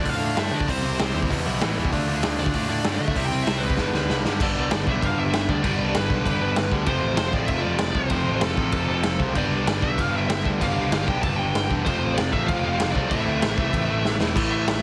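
A raw garage drum kit sits up front in this urgent, aggressive punk rock excerpt at 193 BPM in a straight 4/4, its punchy kick, medium-tuned snare, hi-hat and crash cymbal recorded in a small, pumping room with a gritty, saturated character and a rolled-off top. A dark, high-gain lead guitar carries the melody between A4 and A5, its distortion trailed by tape echo. Beneath it, two picked rhythm guitars drive riffs from the background: one bright with overdrive, the other overdriven yet compressed and mellower. A growly, amped picked electric bass adds a bright edge in the low register. The chords move from Dm through C and Em before settling into a broader passage from 4.4 s that rocks between G and F before closing on Am, and drum fills mark the turns at 3.8 s and 14.0 s. Light reverb and a heavily compressed, radio-like sound give the whole cut a crushed, insistent density.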